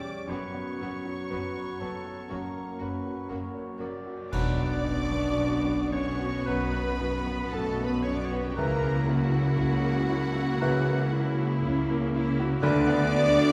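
A clear concert grand piano opens this brooding, passionate excerpt from a romantic movement for piano and orchestra, carrying the melody up front with a deep bass, while an intense, distant violin section also sings the melody high above. A bright clarinet, a mellow cor anglais and a bassoon in the background weave second lines and accompaniment from the start, as a dark, tight French horn section holds very quiet sustained chords beneath. At 0.3 seconds the lush lower strings arrive: a second violin section with a smooth top in the background, even violas, very quiet cellos and expressive double basses, joined by a cymbal swell, clash cymbals and concert bass drum with dark cymbals in a small-room sound. At 4.3 seconds the harmony settles from F-sharp to B minor on a full ensemble accent, and a pure flute with a soft attack enters in the background on F#6, while the percussion falls away at 6.4 seconds. 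The slow 58 BPM pulse in B minor is stretched by rubato and uneven beats, and the orchestra is heard from further back in the room through a wet scoring stage reverb.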